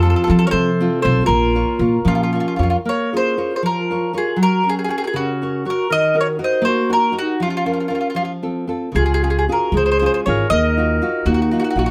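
A round, double-strung mandolin carries the melody up front with a touch of plate reverb in this lively, sunny excerpt of an Italian folk serenade, moving in a rubato 6/8 over minor-key harmony. A dark, distant clarinet plays a classical-style second line while a full-bodied, fingerpicked nylon-string guitar accompanies with audible finger squeaks. A woody, thumpy gut-string upright bass plucks beneath them, dropping out at 2.8 seconds and returning at 8.9 seconds, all in a moderate studio room.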